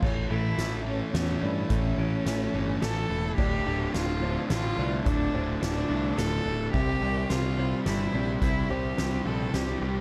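This is a melancholic, cathartic post-rock excerpt in a steady three-beat metre, heavy yet tender, with a dark production in a small room. A sludgy overdriven guitar riff and a round, fuzzed picked bass sit at the front beside a soft-mallet drum kit with a fat snare, boomy kick and dark cymbals. A rich bowed cello carries the melody from 0.3 seconds, expressive with vibrato, portamento and a soft attack, touched by slapback echo. Underneath, a very quiet, twangy clean electric guitar and a mellow felt-muted upright piano with slapback echo play arpeggios, while a bright, earthy chamber string section holds faint sustained chords. A raw, lo-fi garage guitar joins the riff in the background at 3.4 seconds as the harmony moves from A to D minor with an added ninth and then to C.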